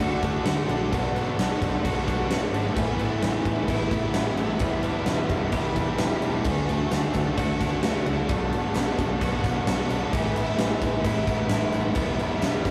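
A rough rehearsal-room recording with warm saturation and a wet small-room reverb frames this wistful, hazy shoegaze and dream pop rock excerpt at 130 BPM in D major, where a huge arena drum kit with a fat snare, punchy kick and bright cymbals sits up front over two biting overdriven guitar riffs, a twangy clean electric guitar playing arpeggios and a dark, round, foam-muted vintage bass in the background, while a very quiet, mellow string-machine cello pad holds sustained chords through Dadd9, Bm7, Asus2 and Em7 and a jingly tambourine joins at 6.7 seconds.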